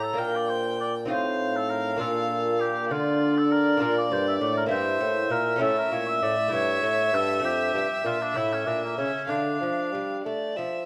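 A warm, distant oboe carries the melody up front in this grave, introspective baroque-style sonata movement, unfolding in 6/8 with a flexible, rubato feel. Above it, a single bowed violin sings a rich second line, expressive with vibrato and portamento. A delicate, fingerpicked lute on gut double strings, some doubled at the octave, supplies the accompaniment. A mellow bassoon with light vibrato and a soft attack anchors the continuo bass. The harmony moves from Bb through diminished and dominant colours to settle on D minor. The oboe falls silent at 10.3 s, while the other parts carry this fragment of a longer work to 10.9 s, heard through close, detailed microphones in a reverberant recital hall.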